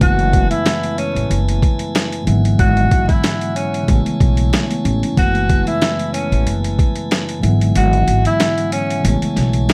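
From the first beat, a gritty, pitched-down boom-bap kit with a thumpy kick and a woody pizzicato upright bass drive a dark, moody 93 BPM hip-hop groove in F# minor, while a mellow tine electric piano with cassette-tape coloring comps, a piping tonewheel organ with key click and a stopped rotary speaker holds quieter sustained chords, and a breathy, whispered tenor saxophone in subtone lays a scooped, vibrato-touched jazz melody with tape echo over vinyl crackle and light reverb, with the kick dropping out at 7.8 seconds.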